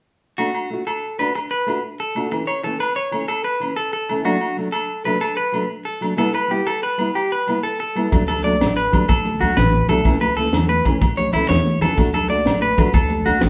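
Warm and carefree, this highlife guitar band piece moves in a straight 12/8 and is cut from a longer performance. It opens with a bright, twangy clean electric guitar up front playing arpeggios over a boxy, fingerpicked parlour acoustic guitar, while ringing, saturated agogo bells mark time beneath them. At 8.1 seconds the groove fills out as a woody pizzicato upright bass, a tight funk drum kit with a high-tuned snare and a tight kick, and thick-skinned congas played with soft hands in the background all join in. The harmony stays simple, moving through D, A and E minor before settling into D, A/C# and back to D. The band sounds as though it is playing live together in one room, bathed in a large, wet studio reverb.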